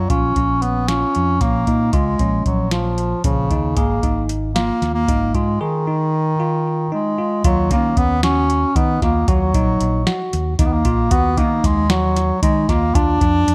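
Set in a light reverb, this brooding, driving progressive instrumental moves in 7/8 at 229 BPM in eighths, in Eb minor, and is cut from a longer piece. A clear, up-front bass clarinet carries the melody with digital delay over bell-like tine electric piano arpeggios, also delayed, while a round, dark fingered electric bass anchors the low end. From 0.1 s, a soft, overdriven vintage rhythm box adds a deep kick, crisp snare and metallic hi-hats, and at 7.4 s the harmony turns from Bbm and Absus2 toward Eb-rooted chords.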